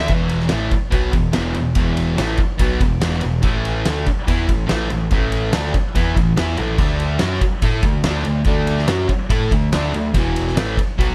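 A dry, up-front recording of raw, swaggering garage rock in straight 4/4, where a bright, double-tracked and compressed fuzz guitar riff moves through E5, A5 and D5 power chords over a growling, overdriven picked electric bass and an oversized low-tuned drum kit with a fat snare, punchy kick and dark crash and ride cymbals in a bright stone room, all of it cut from a longer piece.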